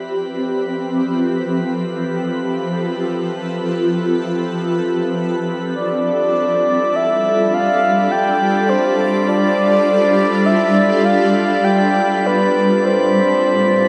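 Bathed in huge reverb within a dark, warm production, this serene, weightless ambient fragment in free time fades in on a shimmering, detuned pad and a drifting glass-harmonics texture over Fmaj7, G7 and Am chords, before a breathy, flute-like synth lead with vibrato and tape echo enters up front at 5.8 s.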